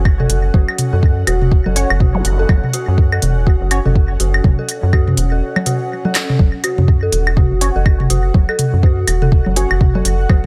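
Quirky and hypnotic, this short cut from a longer minimal techno piece rides a swung 4/4 groove at 123 BPM, built on a soft, up-front electronic kick, a clicky minimal kit of handclaps and hi-hat, and analog-sounding electronic claves, toms and congas with delay. A rubbery, hollow square bass pumps against the kick beneath an eerie, inharmonic FM bell riff with chorus, phaser and tape echo, while a resonant sawtooth texture bubbles through random filter steps. Mellow, organ-like percussive stabs appear from 1.8 to 3.8 seconds and again from 7.6 seconds, a brief electronic zap sounds at 2.1 seconds, and a break at 5.4 seconds ends in a drum fill, all in a dry, close mix.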